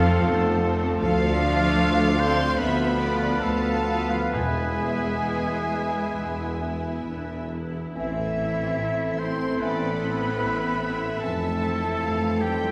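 A lush violin section carries the melody in this melancholic, yearning slow movement for symphony orchestra, its bowed line focused and full of vibrato as the pulse flexes with rubato. A second, more distant violin section sits in the background with a smooth, even line, joined by a pure, soft-edged flute and a punchy solo oboe, while a very quiet clarinet adds a mellow counter-line. Beneath them, an intense viola section and a faint, roomy bassoon fill in the accompaniment, and very quiet horns and close-miked, bright trombones hold sustained chords, with tight, gentle trumpet stabs placed in the background. The low end rests on a close cello section, a smooth double bass section and a soft tuba, and timpani struck with medium mallets sound only from 4.4 to 5.7 seconds. The harmony moves from F and D minor through a diminished chord to E, settling on A minor before an Fmaj7, with the clarinet and bassoon stopping at 11.5 seconds. 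Heard from further back in a wet scoring stage, this fragment is cut from a longer piece.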